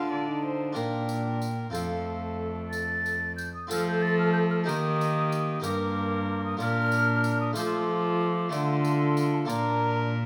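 A stately 6/8 pulse carries this courtly, renaissance-style consort dance, cut from a longer piece, as a hollow, airy concert flute with vibrato sings the melody above a nasal, gut-strung viola on the second line. A clear but distant trombone and a full, plucked Flemish-style harpsichord fill in the accompaniment, while a rich, up-front cello with light vibrato anchors the bass and a jingly, dry tambourine joins quietly at 0.8 s. Light reverb and close, detailed microphones give the consort an intimate, finely etched sound.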